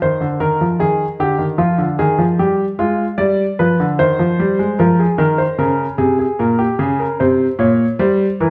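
A wet stone room with a one-second reverb surrounds an intimate, up-front concert grand piano, its action noise audible and its bass deep and natural. This serious, solemn baroque-style two-part invention moves in 3/4 at 75 BPM with a straight feel, tuned to A4 = 438 Hz. The solo piano spans Bb2 to D5 across 8.5 seconds cut from a longer piece, with harmony passing from Cm through Ddim, G7, Fm and Gdim/Bb before arriving at a C7 chord with its third omitted.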